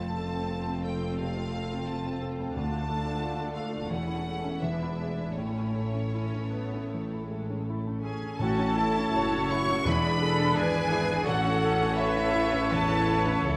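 A clear, up-front grand piano carries the lyrical, passionate melody in this romantic A major fragment for piano and orchestra, moving with rubato at about 76-90 BPM over lush bowed violin, viola and cello sections and a clear bowed double bass section, with a very quiet cor anglais and a pure, silvery flute joining at 8.0 seconds, then at 8.4 seconds mellow French horn chords, distant trumpet stabs and round, soft-mallet timpani that fall away at 10.9 seconds, all set in a moderate scoring-stage reverb.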